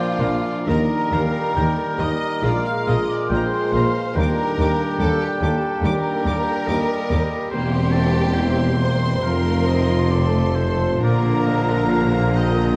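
Moderate scoring-stage reverb and a layer of vinyl crackle frame this lyrical classical passage in Bb major, cut from a longer piece and moving at about 70 BPM in 4/4 with rubato. A dark violin section carries the melody with vibrato and portamento, while a soft-attack violin section, a clear oboe, a distant clarinet and an airy flute ensemble weave second lines, and a punchy bassoon and very quiet rich violas fill the accompaniment. Beneath them, a ringing concert harp plays arpeggios, tight French horns and a vintage-toned trombone section hold sustained chords, a mellow trumpet section adds background stabs, and cellos, focused double basses and a present tuba anchor the bass.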